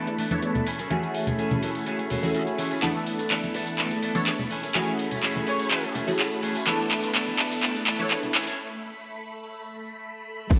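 Funky and sensual, this filtered disco house excerpt moves at 125 BPM in a straight 4/4, cut from a longer piece and built as one long build-up with a filter sweep running from the start to 10.5 seconds. A punchy, detuned sawtooth polysynth comps through chorus and phaser while a swirling vintage string machine holds sustained chords in the background, its phaser and 12-bit sampler grit adding texture, both parts pumping against the sidechain under a low-pass filter. A dark, clean electric guitar with an envelope filter plays a riff, and a bright, growly fingered bass sits very quiet beneath, moving between E7sus4 and F#m9 before the harmony drops out at 8.3 seconds. The up-front house kit brings metallic hats, handclaps and crash, with a drum fill from 2.8 to 8.6 seconds, while tambourine and congas add an acoustic small-room feel, and a smooth trumpet section with light vibrato and tape echo appears briefly at 0.3 seconds before floating back in from 4.2 to 8.2 seconds. 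After a break, a layered, punchy electronic kick lands at 10.5 seconds, and a lush hall reverb wraps the mix.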